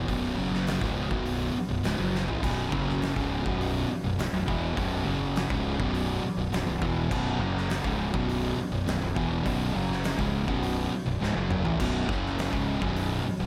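Lightly reverberant studio sound frames this sludgy, hypnotic stoner and doom metal passage, where two thick fuzz guitars play distorted riffs, one warm and up front and one darker in the background, over a growly, overdriven fuzz fingered electric bass and an oversized low-tuned drum kit with a boomy kick, fat snare, gritty saturation and a pumping big-room sound; a bright, double-tracked crunchy overdriven guitar joins at 2.4 seconds, a very quiet deep dark ambient pad holds moody chords beneath, and a drum fill from 11.2 seconds leads into a new section at 11.8 seconds.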